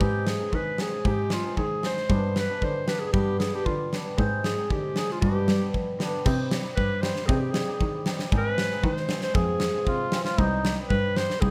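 A bittersweet yet festive klezmer passage in two, cut from a longer piece, opens with a warm, up-front clarinet singing the melody in a classical style with a slapback echo, over a mellow, shimmering hammered cimbalom and a distant, floating bowed cello played sul tasto. A big acoustic rock drum kit with a punchy kick, medium-tuned snare and crash cymbal sits up front in a bright stone room, and the harmony turns toward a minor colour when a new section begins at 6.3 s. Between 9.9 and 10.8 s, a brilliant, nasal trombone with a straight mute adds a brief second line with light vibrato and a soft attack, all within a light reverb.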